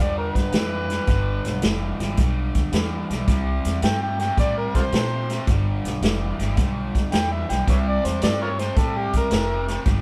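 An amplified, overdriven harmonica takes the solo in this gritty, swaggering electric blues shuffle, using jazz-style phrasing with scooped notes, tongue slaps and a light vibrato. Beneath it, a raw garage guitar plays a picked, overdriven riff in its low register, while an upright bass adds a woody pizzicato line with steel strings. A vintage acoustic drum kit comes in at 0.4 seconds and sits up front, its punchy kick, medium-tuned snare and hi-hat heard with a natural, small-room character and a rolled-off top. The swung eighths move over a G6 to C5 chord change, and light reverb gives the sense of a band playing live together in one room. The clip is cut from a longer piece.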